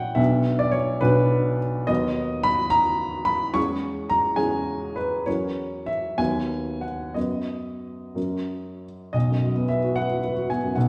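A woody, intimate upright piano, its action noise clearly audible, plays alone in a romantic classical character piece, pressing and pulling at the time in a brooding, passionate six-eight. The harmony shifts from minor shadings toward a resolved major close, and a new passage begins at 9.1 seconds before the clip breaks off at 10.9 seconds, cut from a longer piece. A wet stone-room reverb surrounds the piano, which is heard from further back in the room.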